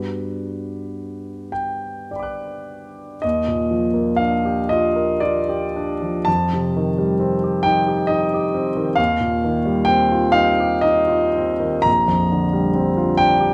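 Impressionist classical solo piano in a luminous, hazy mood, taken from a longer piece and unfolding slowly in 6/8 at roughly 33-47 BPM with a free, rubato feel. The concert grand sounds clear and intimate, placed up front with deep bass, long sustain and audible action noise. Its lush harmonies move from Gmaj7 in G major to Ebmaj9 at 3.2 s as the key shifts to Eb major, then pass through F9 and Eb69 before settling on Bb69, all within a moderate recital-hall reverb.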